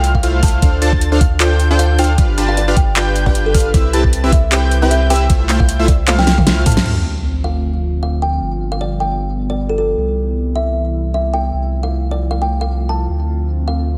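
A bright, detuned supersaw stab riff with cassette-tape grit and delay drives this lush, bittersweet future bass piece at 154 BPM in a swung half-time feel, over a knocking electronic kick, a huge-snared dubstep kit with metallic hats, a deep, thick sub bass and a woody, close-miked kalimba melody, with a soft, dreamy lead arpeggiating in the background until a sub drop at 6.9 seconds ushers in a breathy, mellow chorused pad as the kit, kick and stab fall away, the melodic parts and bass pumping under sidechain in light reverb.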